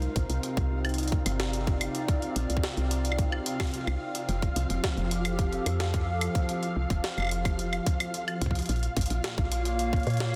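A tight, up-front electronic kick drives this glitchy, intricate IDM excerpt at 109 BPM alongside a gritty, pitched-up jungle sampler-style kit with a high-tuned snare, hi-hat, woodblock and delay, a woody, dark FM bass, a hollow, flute-like pad carrying sustained chords through chorus, sidechain pumping and shimmer reverb, and a flickering granular texture, moving over Cm7, F and Bbm in a dense, heavily limited master.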